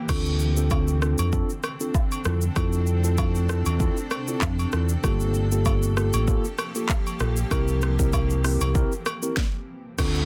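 A dense, tightly limited mix with a faint mains hum carries this joyful, breezy afrobeats cut at 97 BPM with a light sixteenth-note swing, where a punchy, round fingered electric bass and an up-front electronic drum kit with deep kick, sharp softly clipped snare, smooth hats, handclaps, rim clicks and shaker drive a Dm7–Fmaj7–Gm9–C7 progression under a mellow, clean tine electric piano, a blurred, evolving granular cloud pad with its own reverb, and quiet small-room agogo bells and woodblock, before a stop at 9.4 seconds and a brief electronic downlifter at 10.0 seconds close the excerpt.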